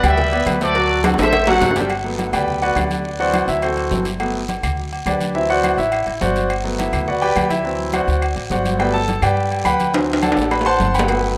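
A rough home-demo mix in a lush hall reverb carries this festive, danceable salsa fragment, cut from a longer piece, where a punchy, vintage trumpet section with vibrato and tape echo states the melody until 1.9 seconds, and cowbell and bongos drop out at that moment too. From there an up-front, brilliant grand piano, intimate enough to reveal its action noise, takes a long-sustaining solo over alternating major-seventh and dominant chords, anchored by a dark, thumpy pizzicato upright bass with gut strings. Ringing agogo bells and timbales, soft-handed congas with a thick skin, raspy close guiro and very quiet saturated woody claves keep the groove going, with drum fills arriving near 1.0 and 9.9 seconds.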